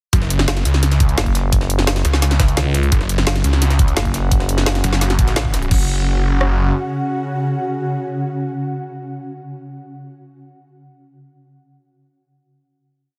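Futuristic and mechanical, this short, dark technical drum and bass piece at 172 BPM drops straight in with a snarling, distorted sawtooth bass, joined at 1.2 seconds by a growling, thick FM bass answering its chopped phrases, over layered electronic drums: a knocking broken-beat kick with rim clicks, a woody overdriven snare with bright hats and crash, and a very quiet, gritty pitched-up breakbeat loop. A swarming, tense, wave-folded drone pumping with reverb then enters at 3.4 seconds and carries the final chord from 5.7 seconds, ringing out until 9.3 seconds, all under a dense, heavily limited master.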